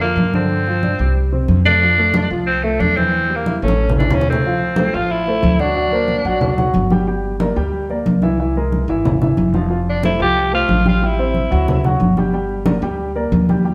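This lively, sunny Afro-Cuban jazz excerpt opens with all four parts together: a growling tenor saxophone up front, a concert grand piano, an upright bass and congas, moving at a brisk 182 BPM in a straight 4/4. The saxophone carries the melody with a raspy, gritty, vintage edge and vibrato, playing until 6.6 seconds and returning from 9.9 to 12.0 seconds. Beneath it, the piano supplies a warm accompaniment with deep bass and short sustain, while the pizzicato bass gives a woody, thumpy pulse on gut strings and the congas sound ringing under soft hands. A drum fill at 3.5 seconds leads into a new section, where the harmony turns from F major to D minor at 4.4 seconds and moves through altered chords such as Daug7 and Caug7. The band plays live in one room, and a stone-room reverb lends the ensemble a resonant air.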